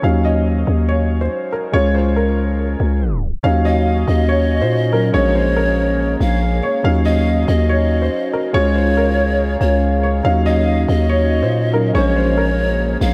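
Hip hop in Eb dorian at 141 BPM with a half-time feel, melancholic and dark, built on a dark concert grand piano that carries both a worn, intimate melody touched with subtle chorus and tape echo, with audible action noise, and a deep, mellow accompaniment over an up-front, growling, buzzy 808-style bass. After a tape stop from 3.0 to 3.4 seconds, an ethereal glass harmonica enters in the background with pure, beating sustained chords, and at 3.7 seconds a hollow, airy pan flute adds a tongued second line with chiff, vibrato and its own tape echo. The short excerpt cycles through Ebm7, Db and Bbm7, and the whole dreamy mix is soaked in a huge ambient reverb.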